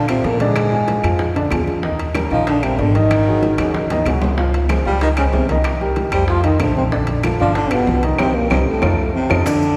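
Lively and danceable, this Afro-Cuban jazz excerpt in Bb major moves at 189 BPM, with a dark, breathy trombone with vibrato carrying the melody over a clear baritone saxophone second line, intimate baby grand piano chords with audible action noise, and a growly pizzicato upright bass up front, while ringing congas and timbales and woody claves sit in the background, round bongos play very quietly, grainy maracas join only at 9.5 s, drum fills land at 3.6 s and 9.0 s, and the whole recording sits in a long church reverb.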